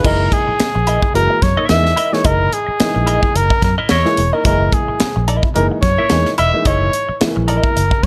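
Funk with a gritty, playful mood and a sixteenth-note swing, built on a single Gb13 chord in this short cut from a longer piece, where a breathy, mellow trumpet carries the jazz-style melody up front over a clean, compressed electric guitar with wah and plate reverb, a dark, woody upright piano whose slightly detuned stabs carry audible action noise and plate reverb, a round, foam-muted vintage fingered electric bass, and a crisp, polished fusion drum kit with a high-tuned snare, punchy kick, hi-hat and crash cymbal, all set in a light reverb.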